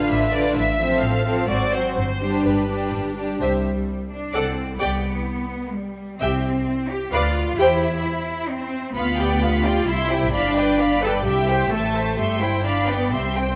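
In a straight 3/4 at 130 BPM, this stormy, restless fragment of a quick classical-period movement for string orchestra in C major sets a rich, smooth violin section on the melody over a second, expressive violin line, with a focused viola section in accompaniment and up-front cello and double bass sections sharing the bass, all bowed with vibrato in a concert hall's moderate reverb, as chromatic harmony around an Ab7 gives way at 3.4 seconds to a section built on C and G7 cadences.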